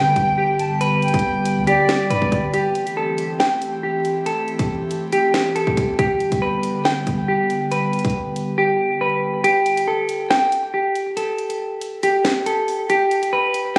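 This dark, menacing drill piece opens with a pure, reedy flute line with vibrato and tape echo, an airy, breathy pad of detuned chorused chords, a clean, hollow-bodied electric guitar playing filtered, echoing arpeggios up front, and a deep, mellow 808-style bass, with the drill kit's hard-clipped kick, sharp snare and bright hats arriving at 0.2 seconds in a half-time feel. The flute and bass drop out at 2.5 seconds, leaving guitar and pad over the beat until the whole kit falls silent at 8.6 seconds, after which the drums return with the kick muted for the closing stretch beneath the guitar. The compressed mix carries light reverb, a roomy phone-recorded character and a layer of vinyl crackle.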